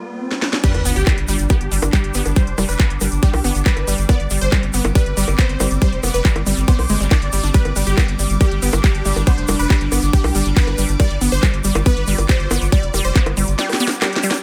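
Intense and psychedelic, this 139 BPM psychedelic trance cut opens with an electronic riser and sub drop over an evolving, morphing wavetable pad with chorus and built-in reverb, while a layered drum kit enters with a fill at 0.3 s. The drop at 0.6 s brings in an overdriven, tight electronic kick up front, the drum kit's cracking snare, crisp hats, bongos, handclaps and crash, a grainy egg shaker, a deep, round analog bass, a punchy, detuned supersaw stab melody with phaser and digital delay, and a lush, warbling unison pluck riff with delay. An airy, breathy pad joins from 1.9 s, and the pads, stab and pluck all carry sidechain pumping in a fairly dry mix until the kick drops out at 13.6 s under a closing drum fill.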